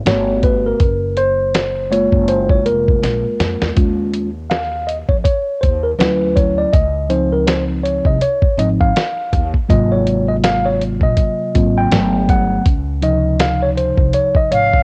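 A swung sixteenth-note groove from a compressed, muffled sampler-style kit, with a thumpy kick, fat snare, 12-bit grit and cassette tape texture, drives this smooth, cool jazz-hop excerpt, cut from a longer piece and including a brief drum fill around 3.0 seconds. A woody, growly pizzicato upright bass with transformer saturation sits beneath a mellow, clean tine electric piano that solos up front through lush seventh, ninth and thirteenth chords. An airy, vibrato-tinged concert flute enters with a soft attack at 14.5 seconds, all wrapped in light reverb and a homespun cassette feel.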